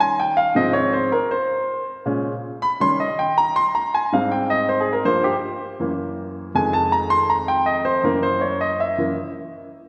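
Set to a straight 4/4 pulse at 161 BPM, this sophisticated, danceable jazz fragment from a longer piece features a warm, natural, up-front grand piano playing solo in Ab major (tuned to A4 = 444 Hz) from 0.0 to 9.3 seconds across a range of F2 to C6, moving through chords such as Eb7, Bbm7, Abmaj7, Gm7, Gb7 and Fm7, all bathed in the wet 2.1-second reverb of a church or concert hall.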